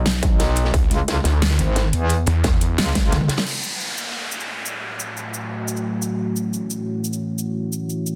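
A dark, futuristic stretch of technical drum and bass at 176 BPM in a straight 4/4, built on a distorted electronic kick and a dubstep drum kit with a huge snare and metallic hats, alongside a crunchy breakbeat kit whose gritty, rolled-off acoustic hats and snare sit lower in the mix. In F# minor, the low end is carried by a metallic, wobbling FM bass with chorus and tube saturation from the very start, while a snarling, detuned saw bass growls through distortion between 0.7 and 2.8 seconds over a C#m7 chord. A drum fill at 3.0 seconds closes the first section, and as the harmony moves to F#m7 at 3.5 seconds, a downlifter sweeps through while the dubstep kit carries on with crash, shaker and toms. From 5.1 seconds a deep, moody ambient pad enters with slow-attack sustained chords, its chorus and reverb roughened by vintage 12-bit sampler grit and pumped by sidechain. The mix is dense and heavily limited, with light reverb and the kick, dubstep kit, basses, pad and downlifter all pushed up front.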